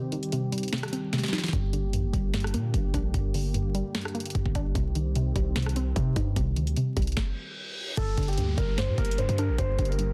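A half-time trap groove sets a dark, brooding mood in this hip hop excerpt, cut from a longer piece, with an up-front electronic kit of knocking kick, sharp snare, rim click and bright hi-hats. A warbling, lo-fi pluck with chorus and a filter sweep carries the accompaniment from the start, over a deep, detuned analog pad holding sustained chords. After an opening break and a drum fill, a punchy, heavy 808-style bass lands at 1.5 seconds and drives the low end through the Cm and Gm changes. The track stops at 7.2 seconds while a reverse cymbal and downlifter sweep in faintly. At 8.0 seconds a soft, intimate, felt-muted upright piano takes the melody over a return to Gm. The mix is dry and dense, heavily limited in a modern way, with vinyl crackle giving it a dusty edge.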